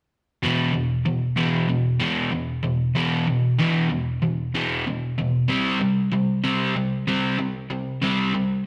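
Rock in a straight 4/4, angsty and brooding, cut from a longer piece. A lone electric guitar plays solo from 0.4 s to 8.6 s, its crunchy overdriven tone picked and double-tracked, and it sits up front. It ranges from E2 up to C4, moving from an E5 chord at the start to a C5 at 5.5 s. The guitar has a warm edge, and a wet stone-room reverb surrounds it. The recording itself is rough, with the feel of a rehearsal room.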